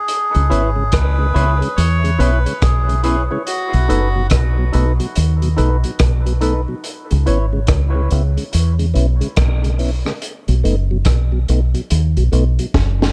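A round, foam-muted fingered bass sits up front in this heavy, meditative dub reggae excerpt at 71 BPM in C# minor, swinging on the 16ths as the chords move between C#m7 and B7, while a gritty, saturated breakbeat kit with a punchy kick and high-tuned snare carries on to a drum fill at 12.7 seconds. A reedy, breathy melodica states a brief dub-echoed melody until 4.3 seconds, a twangy guitar sits in the background with echo, and a hollow, percussive organ stab with chorus and echo recurs until 7.5 seconds. Underneath, a mellow tonewheel organ with key click turns through a slow rotary speaker, all set in an echo-heavy mix with light small-room ambience.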